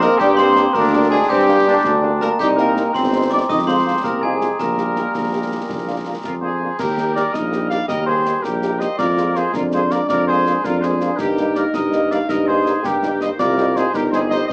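A mellow cornet carries the melody with light vibrato, sounding distant and roomy in a classical style, while a mellow tuba sits up front underneath with a soft-attacked bass line. This is a proud, rousing military-style march for wind band in 6/8 at 109 BPM, in Eb major, cut from a longer piece. A glockenspiel struck with hard plastic mallets adds a bright, sparkling, bell-like second line until 6.2 seconds, alongside a euphonium in the background and a woodwind section, both warm with light vibrato. A French horn section fills in accompaniment in the background, and a very quiet, tight trombone section holds sustained chords with soft attack. Concert snare drum, clash cymbals and concert bass drum sound close and dry, with dark cymbals, and the whole band has light reverb and a small speaker sound as the harmony moves from Gm through Cm and Fm7 before settling on Eb at 6.8 seconds.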